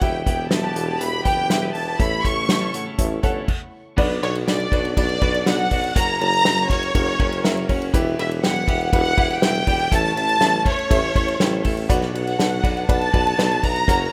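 A bittersweet, dramatic piano-driven pop passage in B minor at 121 BPM opens with an expressive bowed violin section carrying the melody up front over a dark, woody upright piano, a bright, twangy twelve-string electric guitar riff and a punchy tuba bass with light vibrato, while an acoustic drum kit with a tight kick, played with bundle sticks, keeps a straight 4/4 and an airy, breathy pad holds soft chords until 3.5 seconds before a brief stop, all set in a rough home demo mix with light studio reverb.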